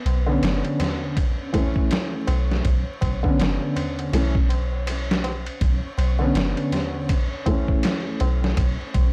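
Trip hop in B minor at 81 BPM with a swung 16th feel, brooding and hypnotic, cut from a longer piece and built on a slow cycle of Bmadd9, A and B9sus4 chords. A compressed, pitched-down sampler drum kit with a thumpy kick, medium-tuned snare and ride cymbal sits up front beside a deep, round 808-style bass with tube saturation, while a low-tuned tabla with a short ring stays in the background and a felt-muted upright piano adds mellow, intimate chords through harmonic tremolo, 12-bit grit and tape echo from 0.3 to 8.6 seconds. A very quiet reversed, detuned granular texture swells dreamily behind everything, and the dry, gritty hardware sound carries a layer of vinyl crackle.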